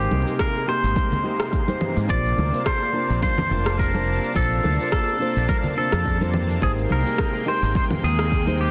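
Relaxed and smooth, this short sunset chillout excerpt in Ab major sways at 106 BPM with a light swing, as a twangy, up-front pedal steel guitar sings the melody through delay over dark, thumb-plucked nylon-string guitar, a lush, detuned unison pad with chorus, a round fretless bass, a glassy texture of drifting overtones in the background, ringing congas, and overdriven electronic kick, cabasa, rim click and congas, moving between Abmaj9 and Bbmaj9 in a dense, heavily limited modern mix.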